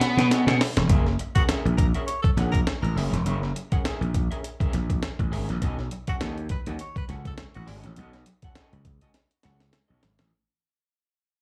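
Heard as a live gig through the venue's PA, with club reverb yet little reverb overall, this funk excerpt struts along at 102 BPM in 4/4 with a light 16th-note swing, centred on F# mixolydian. A breakbeat sampler-style drum kit sits up front with a thumpy kick, high-tuned snare and hi-hat, compressed and tape-tinged, opening with a fill that returns at 9.1 seconds. A nasal lead guitar with a parked wah and overdrive touches a single B3 in the first 0.6 seconds, slapback echo trailing it, while a gritty, growly slap bass enters at 0.2 seconds, overdriven, punchy and bright, running between E1 and B2. An electric guitar through a small old amp comps twangy, slightly broken-up picked parts with harmonic tremolo and slapback echo, lo-fi in character and sitting low in the mix. A breathy tenor saxophone with vibrato carries a second line from 1.3 to 7.8 seconds, its clear pop tone wrapped in slapback and tape echo. 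The harmony moves from B9 to F#9 and back to B9 as the piece fades out from 0.9 seconds onward.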